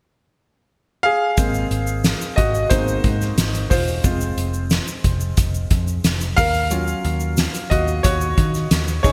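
A natural, up-front grand piano opens at 1.0 s, and at 1.4 s it takes a solo in this anthemic, hopeful piano-driven pop excerpt at 90 BPM in Ab mixolydian. Joining it there are a round, dark, foam-muted vintage picked electric bass, a soft-mallet drum kit with a fat snare, boomy kick and hi-hat under gated reverb, and a grainy tube shaker in the background, all moving through Abadd9, Fm and Ebm7 in a lush hall with bright 1980s-style digital production.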